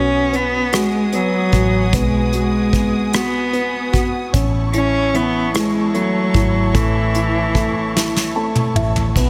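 A clear, bowed cello sings the melody with vibrato and a touch of tape echo from the start, over a dark, woody upright piano, a lush, distant string section holding sustained chords and a round, foam-muted electric bass. At 0.3 seconds a soft brush drum kit joins up front, with an airy studio sound and a punchy kick, giving this heartfelt six-eight pop ballad its gentle sway. The drums and piano both play a fill from 7.9 seconds, the cello drops out at 8.3 seconds, and the whole sits in a light studio reverb.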